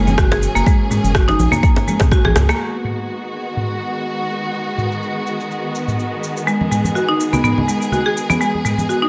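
A lush, close-miked afro house excerpt in G# minor at 124 BPM with a gentle 16th-note swing and an earthy mood, where bowed symphonic strings hold vibrato-rich chords throughout and a buzzing, woody marimba struck with hard mallets plays bright arpeggios through tape echo. A round sine sub bass, an up-front overdriven electronic kick, ringing low-tuned congas and a deep, dry djembe drive the opening alongside a tape-coloured afro-pop kit of cabasa, rim clicks and toms. A drum fill and band accent around 2.5 seconds then lead into a filter sweep on the kit from 2.6 seconds, as the chords move from F#7 to G#m7.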